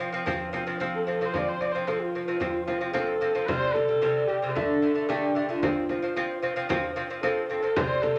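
A dark, husky horsehead fiddle carries the melody in this galloping, vast piece of Mongolian folk music, its bowed horsehair strings sounding woody and distant, with vibrato and portamento shaping each phrase. Beneath it, a bright acoustic lute plays fingerpicked arpeggios on double nylon strings, some doubled at the octave, sitting delicate and up front. For the opening 3.5 seconds, a second horsehead fiddle holds a rich, intimate drone, close and airy, with a soft attack, light vibrato and portamento, before falling away as the passage moves into its second section. A frame drum joins at 0.3 seconds, its acoustic tone close and dry, adding a warm pulse. A moderate large-studio reverb gives the music a sense of space, and this short cut from a longer piece ends at 8.2 seconds.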